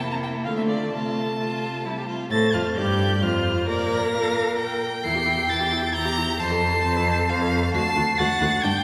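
Cheerful and spirited, this quick classical-period movement in triple time for string quartet, cut from a longer piece, features a rich, expressive first violin carrying the melody high above with vibrato and portamento, a second violin playing a smooth, even second line, a warm viola offering accompaniment with its own sliding expressiveness, and a clear, focused cello anchoring the bass up front, all heard in a reverberant church or concert hall as the opening section gives way to a new one at 2.3 seconds.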